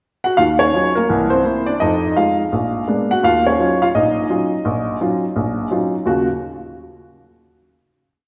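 Solo jazz with a moody, smoky character, this short complete piece swings its eighth notes in a steady four. A single upright piano enters at 0.2 seconds during a brief pickup and plays until 6.3 seconds, with a woody, slightly detuned tone that sits present and up front. Its melody is built from motif-based call phrases, partly doubled in octaves. A stride bass and close voicings underpin that line. A final chord arrives at 6.1 seconds and rings out in a wet scoring-stage reverb with the spacious air of a church or concert hall.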